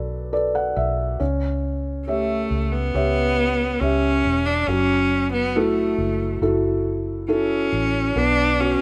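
A slow, straight pulse in four carries this heartbroken pop ballad fragment, cut from a longer piece and steeped in longing. A felt-muted upright piano opens with a short fill, its soft, mellow tone up front and intimate, with the action noise of the instrument audible beneath the chords. A vintage fingered electric bass sits alongside it from the start, foam-muted, round and punchy in its dark low register. At 2.1 seconds a single bowed cello enters with the melody, clear and focused, its vibrato placed close and up front over the accompaniment. The harmony drifts from Bm7 through C#dim and F#m7 before settling on Bm near the end. A small room ambience and the rough mix of a home demo give the whole passage an unpolished, private feel.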